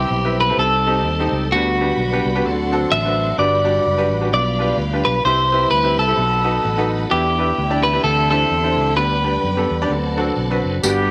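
Uptempo gospel at 129 BPM in G major with a swung 4/4 feel, jubilant and uplifting, led by a clean, compressed electric guitar melody up front with lush chorus and slapback echo over a bright, vintage grand piano, a punchy fingered electric bass, a piping tonewheel organ with key click and a slow rotary speaker in the background, and a distant bowed string section, until a tight horn section with soft attack and a band-limited tambourine arrive at 10.8 s, all set in light small-room reverb.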